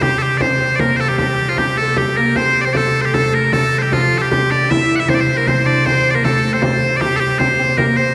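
Piercing, bright bagpipes carry the melody up front in this festive, ancient-sounding medieval dance excerpt at 154 BPM in 3/4, set in C mixolydian. Beneath them, a very quiet, edgy folk-style shawm with vibrato and a woody, plectrum-plucked fretless oud with double strings play second lines. A soft, hollow stopped-flute pipe organ with a touch of chiff holds a drone on C3 in the background, and a deep, large frame drum adds percussion, all bathed in a long cathedral reverb as if captured in a church or concert hall.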